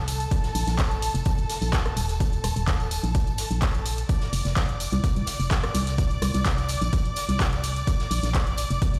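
A straight 4/4 groove anchored by an up-front, punchy electronic kick drives this uplifting, joyful piano house excerpt, with tape-warm analog drum machine handclaps, hi-hat and rim click, a close tambourine in the background, a very quiet jazz brush kit on hi-hat and snare, a dark, hollow organ-like FM bass, and a rich, smooth bowed string section holding sustained chords, the bass and strings both pumping against the sidechain while the mix rings as if played through a big sound system in a bare stone room.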